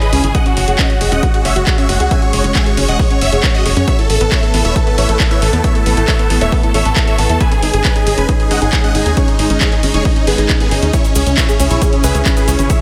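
A pulse at 136 BPM in straight 4/4 drives this soaring uplifting trance passage, cut from a longer piece, with a punchy, tape-warm electronic kick sitting up front from 0.3 seconds alongside an analog drum machine of handclaps, hi-hat and ride cymbal whose hats and cymbals pump with the sidechain. Underneath, a tight sequencer bass blends sawtooth, square and triangle tones into a detuned, filter-plucked line that decays quickly, pumping in the mix and sitting prominently forward. A huge, euphoric supersaw lead carries the melody, its bright, compressed unison tone coloured by phaser, a cassette-tape character and a diffuse ambient delay. Behind it, a thick unison pad with a slow attack holds sustained chords through chorus and phaser, while a mellow unison pluck with a sub octave spins arpeggios through ensemble chorus and delay. The harmony moves from F#sus2 to Asus2 and G#sus4 before landing on C#m at 10.9 seconds, where a grainy acoustic tube shaker joins quietly in the background. 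The whole mix is dreamy and soaked in a lush hall reverb.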